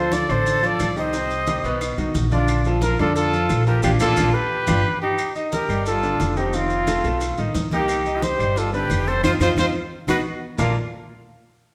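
A wet, roomy live-band sound frames this sunny, lively Afro-Cuban jazz excerpt at 178 BPM in Bb major, with a mellow, softly attacked trumpet up front carrying the melody over a breathy, bright flute with a chiffy edge on the second line. A clear grand piano accompanies while a thumpy pizzicato upright bass with gut strings anchors the low end. Ringing low-tuned congas sit in the background alongside very quiet round bongos, woody distant claves and grainy maracas, with band accents at 3.8 and 9.2 seconds and a drum fill at 10.1 seconds.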